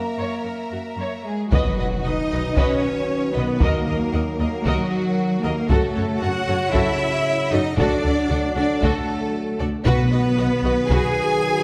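This cinematic, epic orchestral film score excerpt moves at 115 BPM in a straight 4/4 and feels heroic and majestic, set in B major. A lush violin section carries the melody with focused vibrato while a second violin line sits in the background, joined almost immediately by smooth, even violas, up-front cellos holding the bass, and mellow French horns sustaining chords behind them from the start. At 1.5 seconds the music opens into its main passage: dark, roomy trombones add sustained chords, a distant double bass section deepens the low end, a taiko ensemble drives the drums with heavy sticks in a small-room sound, and a huge, bright impact lands very quietly beneath the orchestra. The harmony travels from F#7 through B, D#m, F#m and D before returning to B. Near the close, round, soft-mallet timpani sound a B in the background, and a wet concert hall reverb of 1.8 seconds surrounds the ensemble.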